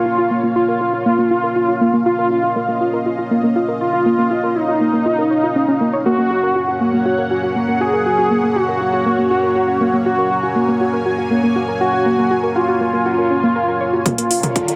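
Melodic techno at 120 BPM in Bb minor, dramatic and driving, built on a thick, nasal unison sawtooth lead with vibrato and tape echo, carried up front over a lush, bright detuned pad and a soft, round pluck playing dark arpeggios through chorus and digital delay, all three pumping against the sidechain while filter sweeps move across both the arpeggio and the pad. The harmony moves from Bb minor to Gb at 6.1 seconds and back at 14.1 seconds, where a punchy, tape-toned kick and a house kit with metallic hats and toms break in for a short drum fill. A faint riser joins at 14.3 seconds, and a lush hall reverb surrounds the mix before this cut from a longer piece ends.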